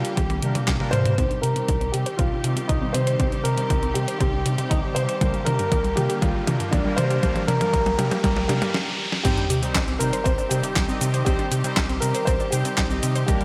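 A clear, boxy baby grand piano sings a melodramatic, bittersweet C minor melody through a low-pass filter and delay, over distant bowed strings, bold chorused synth brass stabs, a round, deep analog bass and a clean 12-bit drum machine with a fat snare, opening this 119 BPM italo disco excerpt before a punchy, tape-warm electronic kick joins almost at once and detuned, sawtooth pluck arpeggios with delay arrive at 1.2 seconds, while a background riser and sub drop build from 4.3 seconds through a brief stop to an impact at 9.2 seconds, the mix set in a lush hall reverb with bright 1980s-style digital sheen.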